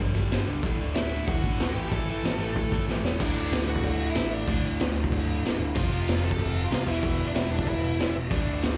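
Punk rock at a rebellious, upbeat 187 BPM in straight 4/4, this short cut from a longer piece drives on a double-tracked overdriven guitar riff with slapback echo, a bright, growly picked bass, and a gritty, saturated raw garage drum kit that sits up front with a punchy kick, a medium-tuned snare and a rolled-off top. From 1.0 s a dark, distorted bluesy lead guitar, also carrying slapback echo, adds a melody above the band, and a drum fill at 2.9 s launches a new section at 3.2 s. The whole performance sounds like a live gig in a small club heard through the venue's PA, with club reverb around it.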